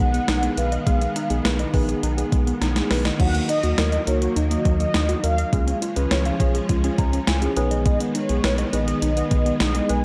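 Synth-pop with a nocturnal, driving mood at 103 BPM, this gritty, dry excerpt pairs a brassy, detuned synth brass melody with chorus and analog delay over a mellow tine electric piano, a lush string machine with ensemble chorus, a warbling lo-fi pluck playing arpeggios, a deep, round analog bass and a thumpy, up-front 12-bit drum machine that enters at 0.1 seconds, with a drum fill at 2.6 seconds and an electric piano fill at 6.7 seconds as the chords move from Abm/Cb through Ebm and Db back to Abm.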